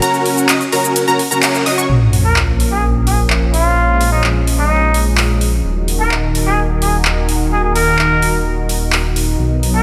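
Powerful and anthemic, this festival progressive house excerpt opens on a huge, compressed supersaw riff with a cassette-tape, filtered character, layered with bright, punchy pluck arpeggios, while an overdriven big-room drum kit with metallic hats, handclaps, ride and shaker drives the whole passage up front. At 1.9 seconds the riff and pluck give way to a background sub drop, a thick detuned saw bass and a warbling, vintage unison pad carrying sustained chords. From 2.2 seconds a distant, nasal trumpet with a straight mute plays a breathy, jazz-style solo melody with scooped notes and light vibrato, all within a light reverb.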